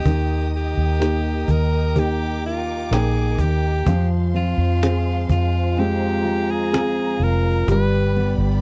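A dry, close 1970s-style studio sound frames this brief, hopeful pop ballad excerpt in Eb major at 63 BPM, where an edgy, forceful alto saxophone sings the melody with vibrato over warm baby grand piano, lush bowed strings with portamento, a round, punchy muted electric bass up front, soft-handed woody cajon, and a dark fingerpicked steel-string acoustic guitar joining in the background at 3.9 seconds as the chords move from Eb through Fm to G.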